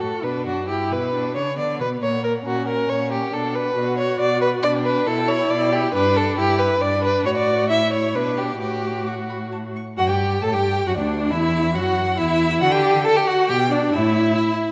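A moderate scoring-stage reverb surrounds this short cut from a quick, lively classical-period movement for string quartet, which moves at 136 BPM in 3/4 and turns from B minor toward D major at 4.6 seconds. The first violin carries the cheerful melody with a focused, vibrato-lit tone, while the second violin sits up front with a smooth-topped, warm second line. A close viola adds expressive accompaniment with soft attacks and portamento, and the rich bowed cello anchors the bass until 14.3 seconds.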